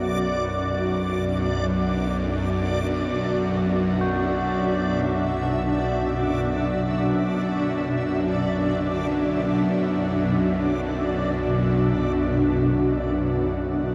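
This dark ambient drone opens at once on a B minor chord, with all four parts sounding together in free time across a vast, ominous space. Low in the mix's foundation, a bowed-like drone sits up front, its string-like, nasal sawtooth tone bright and tense, with detuned unison voices, a noise layer and vibrato giving it a restless edge. Above it, a granular cloud pad holds sustained chords that feel blurred and evolving, its triangle tone softened by built-in reverb and a shimmer reverb. A reversed, dreamy texture hovers on a single high D5, detuned and grainy, while tubular bells play soft, mellow arpeggios in the background, their metallic ringing carried off by diffuse ambient delay and shimmer. The whole recording is very wet, bathed in a huge ambient reverb with a 7.3-second decay, and this 13.9-second passage is cut from a longer piece.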